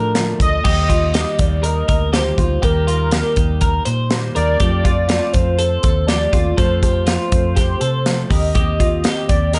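Jangly indie pop with a wistful, restless mood, cut from a longer piece and moving through Dm, Eb, F and Cm7 in a straight 4/4. A velvety, detuned sawtooth synth lead carries the melody with chorus, slapback echo and vibrato, over a dreadnought acoustic guitar fingerpicking the accompaniment and a twangy, compressed twelve-string electric guitar playing clean arpeggios. A dark, round, foam-muted electric bass anchors the low end, and a studio drum kit with a punchy kick and bright cymbals enters at 0.1 s, sitting up front in a dry mix.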